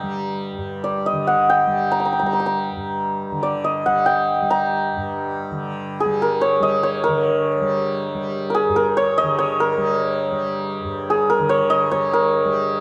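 Indian classical music in raga todi on G, this 12.8-second excerpt has a longing, introspective mood. It moves in 3/4 at 141 BPM and gradually speeds up, with a new section arriving at 7.1 seconds. The bright, shimmering santur carries the melody up front between Ab4 and Bb5, ringing over a softly plucked, buzzing tanpura drone set lower in the mix, all placed in a dark, warm production with moderate recital hall reverb.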